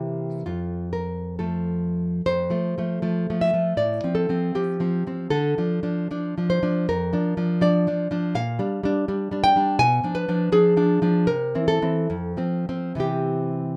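A fingerpicked nylon-string guitar opens this wistful, intimate romantic piece for solo classical guitar, its dark, up-front tone carrying audible finger squeak as it moves in a rubato 2/4 at roughly 64-84 BPM in F major. After a brief opening passage, a new section begins at 2.2 seconds and moves from F through Dm and Gm7/Bb to a Bdim7 before settling on C, F and C again. Moderate studio reverb surrounds the guitar in a rough home-demo mix, and this short passage is cut from a longer piece, ending at 13.8 seconds.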